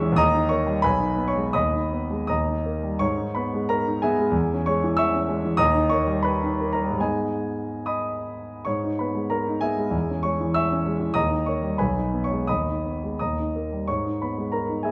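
Bittersweet and brooding, this romantic character piece for solo piano unfolds in a flexible rubato pulse in 2/4. A grand piano carries everything from 0.0 to 14.9 seconds, ranging from the deep bass at B1 up to E6, its tone present and polished and placed up front. The harmony circles between the home minor chord and its dominant, with turns through the minor chord built on the fourth degree, giving the phrases a restless, searching pull. The opening passage returns at 8.7 seconds, restating its material as the brief excerpt continues, having been cut from a longer piece. A wet recital hall reverb surrounds the instrument, and the dark, warm production deepens its shadowed character.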